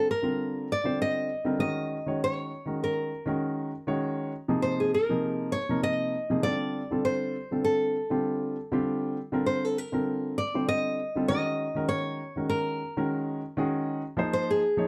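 Driving and slick, this jazz passage swings at 99 BPM in 4/4 and is cut from a longer piece. A fingerpicked nylon-string guitar carries the melody up front in a classical voice, with audible finger squeak and a slapback echo. A concert grand piano accompanies with deep bass and short sustain over chords such as C9sus4, Ebm7 and Dm7, all set in a dark, warm production with a wet booth ambience.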